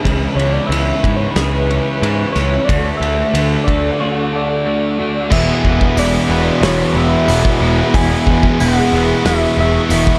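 A soft struck FM synth lead carries the melody from 0.4 seconds, its round, gentle, keys-like tone touched with chorus, vibrato and analog delay, floating over a hazy, blissful rock piece in shoegaze and dream pop style at 91 BPM in 4/4, centered on E mixolydian and cut from a longer work. Beneath it, a dark, thick fuzz guitar with subtle chorus and a lo-fi, overdriven garage guitar with reverse reverb churn out riffs in the background, while a very quiet, clean twelve-string electric guitar spins compressed arpeggios. A punchy, overdriven fuzz bass holds the low end, and a loose acoustic drum kit with dark cymbals, a medium-tuned snare and a pumping room sound drives the groove. A cloudy, evolving granular pad sustains blurred, mellow chords behind everything, moving from C#m7 to D before landing on E at 5.3 seconds. At that point a bright, double-tracked distorted guitar adds a tight riff, and a jingly, saturated tambourine slips in quietly at 6.0 seconds, all set in light, small-room ambience.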